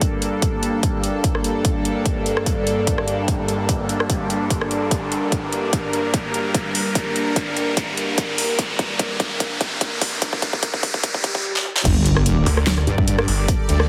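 Heavy wobble dubstep, aggressive and chaotic, with a swung half-time feel, cut from a longer piece and given a heavily compressed, radio-like sound with light reverb. A lush, bright supersaw pad with phaser and sidechain pumping sustains a Gmadd9 chord over an up-front, tape-warm electronic kit, which brings a punchy kick, a huge snare, metallic hats, handclaps, rim clicks, toms and crash. Meanwhile, a filter-swept build-up with a riser, swell and drum fills climbs toward the drop at 11.9 s, where a saturated, chorused wobble bass arrives with the impact and sub drop, joined at 12.5 s by a growling, distorted sawtooth bass with a moving notch.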